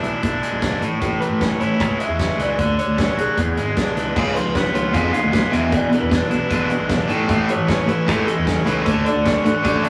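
Upbeat and jangly, this brief indie rock cut, taken from a longer piece, moves at a straight 4/4 pulse over chords such as Amaj7, Dmaj7, E7 and C#7. An electric guitar through a small old amp carries the melody with a slightly broken-up, lo-fi tone, while an overdriven electric guitar plays a bright, compressed riff up front. A modern fingered electric bass sits underneath with a growly, punchy attack, and a loose indie drum kit of crash, hi-hat, kick and snare sounds distant and roomy, its punchy kick and medium-tuned snare softened by a rolled-off top. At 4.2 seconds, as the opening passage repeats, a raw garage guitar joins with its own bright, overdriven riff, sitting up front in the mix. The whole has the rough feel of a rehearsal room, with tube saturation, small room ambience and a moderate stone room reverb.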